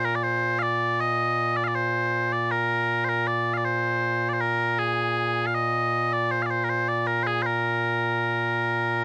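A dry, close studio sound with a 1970s character frames this brief cut from a longer piece, touched with light reverb. It is Scottish traditional pipe music in 3/4 at 79 BPM with a straight feel, set in Bb mixolydian and tuned slightly above standard pitch. A mellow set of small bagpipes plays solo and up front from 0.0 to 9.0 seconds, ranging from Bb2 to F5. Their tone is sweet and continuous, carrying a stirring, ceremonial mood through the whole nine seconds.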